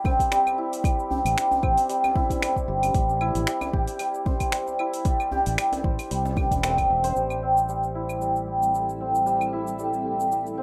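Warm and meditative, this organic downtempo excerpt drifts on a light swing. A shimmering, hammered santur sits up front from the start, ringing out arpeggios through a low-pass filter and digital delay, while a deep, distant djembe with metal rattles sits in the background until about 7.1 seconds. A produced, tape-warm afro-pop kit brings claves, finger snaps, metallic hats and shaker, and a layered electronic kick thumps up front until about 6.9 seconds, just after a full-band accent at 6.6 seconds. From 1.3 seconds a fretless electric bass, direct and amped, rolls underneath with a sidechain pump, moving from a rootless Am7 to C/A and back. At 8.2 seconds a cloudy, blurred granular pad fades in with slow, detuned sustained chords that also pump, closing the passage in a mellow haze within a moderate room and a rough, homemade mix.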